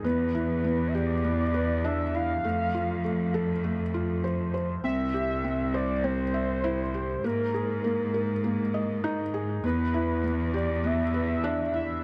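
Luminous and tender, this short passage of piano and strings electronica moves at a straight 100 BPM pulse in 4/4, cut from a longer piece. A felt-muted upright piano sits up front with a soft, intimate tone, playing a riff through the full 12 seconds with a touch of tape echo. Beneath it, a chamber cello section carries the bass line, bowed with a clear, even vibrato. A velvety synth lead sings the melody above, its sawtooth-and-triangle voice wave-folded and sustained, shimmering with chorus and tape echo. The harmony drifts from Em7 through F, C and Absus2 before settling back on Em7, all held in light reverb and a small room ambience.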